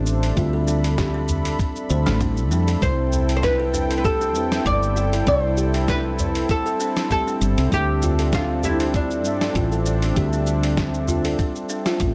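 A mellow, plectrum-plucked oud carries the melody from 2.8 seconds, its double strings sounding deep and woody through an analog delay in this meditative organic downtempo excerpt at 98 BPM in 4/4, with a light 16th-note swing. Up front, a round, dark fretless electric bass with a hollow-body tone anchors the low end under a sidechain pump, while a smooth, detuned analog pad holds sustained chords with a slow attack and chorus. Muted, felt-like synth keys add soft, decaying accompaniment in the background, with chorus, sidechain pumping and tape echo, and a buzzing kalimba plays bright thumbnail-plucked arpeggios through its own tape echo. A gritty, sampler-style soul kit brings hi-hat, shaker and a medium-tuned snare, paired with a thumpy electronic kick, and a small udu sits quietly in the background. The harmony moves from Dm7 to C6 and back to Dm7, and the excerpt sounds dry and gritty, captured as a hardware recording.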